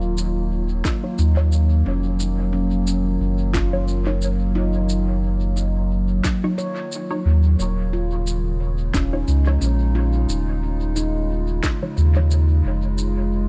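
A lightly swung 89 BPM groove in 4/4 carries this meditative, spacious ambient dub fragment in Eb minor, where a round, up-front sub bass with tube saturation sits under a warbling, lo-fi pad with chorus and reverb that moves from Ebm7 to Dbadd9/Eb at 7.6 seconds, joined by ringing, close-miked handpan arpeggios with tape echo, a deep, layered electronic kick from 0.8 seconds, an electronic shaker and woody snare trailing dub echo, and a muted, phased chord stab with dub echo in the background.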